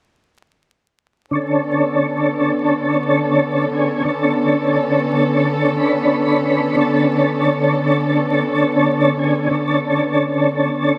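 A swung sixteenth-note feel at 88 BPM in 4/4 sets up this brooding, smoky trip hop fragment in B minor, resting on a single Bm9 chord. From 1.3 s a smooth, clean tonewheel organ carries the accompaniment up front, coloured by chorus vibrato, a slow rotary speaker, tremolo, a low-pass filter and tape echo. Alongside it, a close, muted string section bows dark, veiled sustained chords with vibrato and a soft attack, all set in moderate spring reverb, small room ambience and vinyl crackle within an echo-heavy mix.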